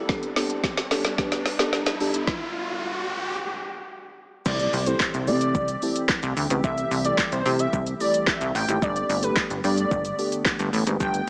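A straight 4/4 groove at 110 BPM drives this upbeat, euphoric dance-pop excerpt in C major, where a deep house drum kit with a deep kick and woody snare fills over a riser, nasal sidechain-pumped chord stabs and a glassy FM pad in the background, stops at 2.3 seconds, then drops at 4.5 seconds with an electronic impact as a punchy, funky analog bass and an airy, dreamy lead with vibrato and digital delay enter, all heard with light reverb through a small-speaker sound.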